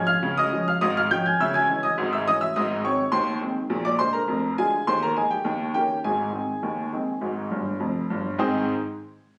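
Captured on a phone in the room with a modest, club-like reverb, this short cut from a longer piece is a lively, cheerful ragtime number in Ab major at 103 BPM in a straight 2/4. A single upright piano plays solo throughout, sounding woody, worn and slightly detuned, and it sits up front in the sound. The harmony moves from Db through Dbm and Ab to Bb7 and Eb7 before settling on Ab at 6.0 seconds, and a brief piano fill at 7.5 seconds rounds off the opening section.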